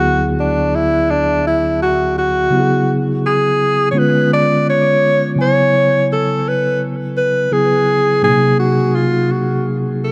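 Hip hop with a cool, nocturnal mood, this excerpt moves at an unhurried pace with a lazy swing on the sixteenths. A breathy alto saxophone carries the melody throughout, playing a jazz-style solo up front with vibrato and a soft subtone, its clear tone trailed by tape echo. Beneath it, a mellow tine electric piano supplies the accompaniment across a broad range, sounding clean and warm as if through its own built-in speakers, also placed up front. The harmony drifts through colored chords such as Dadd9, C#7b9 and F#sus2 before landing on G#7 at 8.2 seconds. A moderate plate reverb and a dark production give the whole a hazy, late-night glow.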